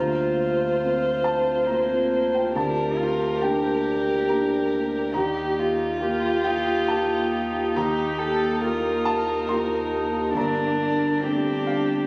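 A dark, woody solo violin carries the melody up front with vibrato, though its tone has a distant quality, singing over a tender, intimate neoclassical setting for piano and strings at 69 BPM in a rubato 3/4. Beneath it, a single cello plays a pure, floating second line sul tasto with a soft attack, while a lone viola sits close but in the background, adding light-vibrato accompaniment. A natural-sounding upright piano, its action noise audible, spans the low and high registers as it accompanies the chords from Bbadd9/D through Gmadd9/D and Ebadd9 before settling on Gmadd9 at 10.4 seconds. A very quiet, glassy FM pad with ensemble chorus and a slow attack holds ethereal sustained chords, and a deep, thick, saturated sine sub bass anchors the low end. All six parts play throughout this 12.1-second excerpt, captured on a phone in the room with club reverb and compression.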